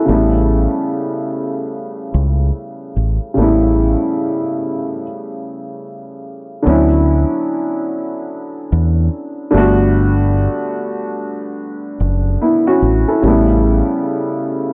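A wet studio reverb gives this mellow, nostalgic lo-fi hip hop fragment, cut from a longer piece, a short glowing tail around its two up-front parts. A warm, worn upright piano with a woody, slightly detuned character carries the chords in its middle register, while a deep dub fingered electric bass sits low beneath it with a dark, round, directly amped tone. The groove has a lazy swing on the sixteenths, and the whole track is tuned a little below standard pitch. The harmony opens on A9, and after a stop from 5.0 to 6.7 seconds the second section moves through Dmaj13 and Gmaj9 before returning to A9 at 13.2 seconds. The bass drops out at 13.8 seconds, leaving the piano to ring on alone until 14.7 seconds.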